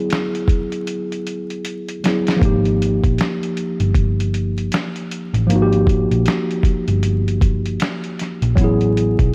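A mellow tine electric piano sits up front from the first moment, its worn, slightly out-of-tune chords colored by cassette tape and a low-pass filter as it moves from Gb9sus4 to Absus2 and finally Asus2 near 8.6 seconds. This is a nostalgic, mellow slice of lo-fi hip hop at 78 BPM in 4/4, swung on the sixteenths and cut from a longer piece. A sampler-style drum kit enters almost at once, pitched down, compressed and overdriven, with a thumpy kick, a medium-tuned snare, hi-hat and finger snaps sitting forward in the mix, and from about 0.9 seconds it plays a fill through the rest of the opening break. At 2.4 seconds a hollow-body short-scale electric bass joins, picked and amped, with a dark, round tone low in its register. The room is nearly dry, and a layer of vinyl crackle runs underneath the whole recording.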